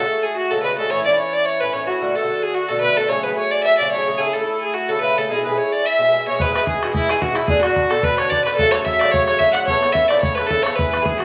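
A lightly swung 4/4 pulse at 219 BPM drives this bright, lively Celtic reel fragment in E mixolydian, where a clear, smooth bowed fiddle with light vibrato carries the melody up front, a reedy accordion with slow beating adds a second line, a warm, metallic Irish bouzouki picks its double strings in up-front accompaniment, and a boomy, band-limited bodhran with a vintage tone joins at 6.4 s, all set in a rough home demo mix with light reverb and small room ambience.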